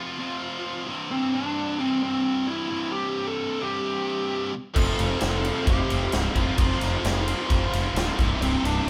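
Hard rock at 131 BPM in C major, powerful and energetic, opens with a dark, distorted bluesy lead guitar melody over a scooped, high-gain guitar riff. At 4.7 seconds a bright overdriven rhythm guitar enters in the background, along with a gritty, very quiet tonewheel organ holding sustained chords through a slow rotary speaker. At 4.8 seconds the band crashes in live in one lightly reverberant room, with a punchy, up-front arena drum kit, a round fuzz-driven fingered bass, and a very quiet double-tracked distorted guitar.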